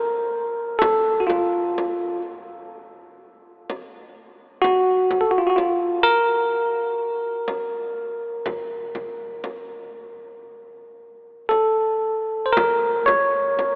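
Caucasian folk in the manner of a lament, this short piece, cut from a longer work, moves at a slow, rubato pace of roughly 54-64 BPM in 4/4, with a longing, mournful mood in Bb harmonic minor. A bell-like tine electric piano carries the melody from the start, sitting bright, clean and up front in a range from F4 to Db5. At 0.8 seconds a frame drum joins, deep and acoustic, struck with hard hands and heard close and dry, well beneath the keys in level. The recording is bathed in a moderate cathedral reverb with a long decay, yet filtered through a telephone-like sound that narrows its tone. A brief new section arrives at 12.6 seconds before the excerpt ends at 13.8 seconds.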